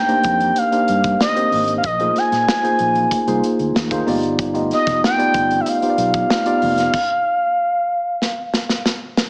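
A smooth, mellow sawtooth synth lead with vibrato and chorus sings up front over a worn, slightly out-of-tune tine electric piano bathed in lush chorus, opening this urban, nocturnal piece of polished 1980s jazz-funk pop at 94 BPM, as a round, dark fretless bass, very quiet high-tuned congas with a ringing tone, and a punchy studio drum kit with a rolled-off top move through Cm9, Bb9sus4 and G7b13 in a lush hall with a small-speaker sound, until the piano, bass and congas drop out around 7 seconds, leaving the lead and the drums, whose fill runs from 8.2 seconds to the cut at 9.3.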